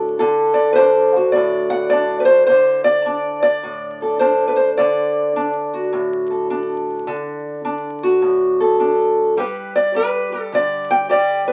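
Swaggering and rollicking, this brief excerpt of acoustic country blues at 105 BPM swings in D mixolydian as a lone fingerpicked steel-string parlour guitar, dark, boxy and up front, plays from the start to 11.5 seconds, moving from D to G at 9.4 seconds, in a small room heard through the crackle of a very old 78 rpm record.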